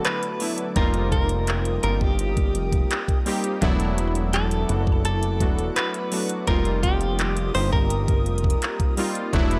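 A knocking, tape-warm electronic drum kit with metallic hats and handclaps sits up front in this moody, longing contemporary R&B passage at 84 BPM. A thick, detuned sawtooth bass joins at 0.8 s, while round analog keys with chorus shift between E9sus4 and F9sus4. A clean, compressed, direct-recorded electric guitar carries a tremolo-tinged melody, an ethereal pad with ensemble chorus hangs in the background, and a very quiet woody FM pluck with phaser adds texture until 7.0 s, all within a gritty, digitally ambient recording.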